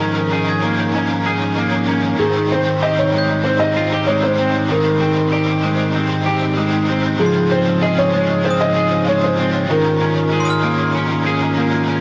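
A felt-muted upright piano carries the melody, its dark, intimate tone thick with felt and audible action noise and trailed by tape echo, in this dreamy, ethereal dream pop excerpt in Ab major at 96 BPM. Up front, a clean electric guitar picks chorused, tape-echoed arpeggios, while a bright, double-tracked garage guitar adds overdriven accompaniment with tremolo and ensemble chorus, and a flute-like tonewheel organ holds sustained chords through a slow rotary speaker. A sparkling glockenspiel struck with brass mallets rings in the background from 0.5 to 11.5 seconds, all within light reverb and a gritty, dry sound marked by lossy compression artefacts, as the chords move from Eb7sus4/Ab to Abmaj7 and Dbmaj7/Ab.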